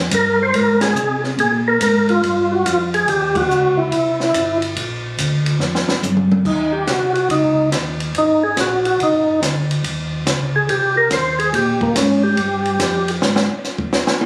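Soul jazz organ trio in a soulful, swinging mood at 142 BPM in 4/4, with a swing feel on the eighth notes, cut from a longer piece. A mellow, round tonewheel organ carries the bass line through slow rotary speaker and chorus vibrato, sitting darker and lower in the mix beneath an overdriven tonewheel organ that takes the melody up front, gritty and percussive with a second harmonic percussion bite and the same slow rotary shimmer. A compact cocktail drum kit sounds acoustic and dry, with dark cymbals, a high-tuned snare and a tight kick, and the band hits accents together at 0.7 and 3.3 seconds before a drum fill leads into the second section at 6.5 seconds. From there the overdriven organ stretches out in a solo over shifting minor, diminished and suspended harmonies until the chords drop away and the drums close with a brief solo from 13.2 seconds. The whole trio sits in a moderate club-like room captured on a phone, with compression pressing the sound together.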